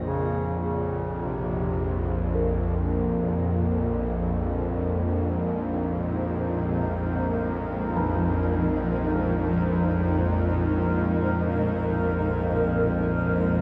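Drenched in a vast cathedral reverb, this cavernous, desolate dark ambient drone in free time, cut from a longer piece, rests on an up-front, tense, string-like bowed-like drone and a barely audible, meditative quartz singing bowl, while a warm, distant solo bass clarinet with tape echo sounds only until 2.1 s, a cloudy, evolving granular pad with shimmer reverb enters at 3.1 s over chords moving from Bbmadd9 to Abadd9/Bb, and a very quiet bronze gamelan-type metallophone adds shimmering, vintage-toned arpeggios from 8.0 s.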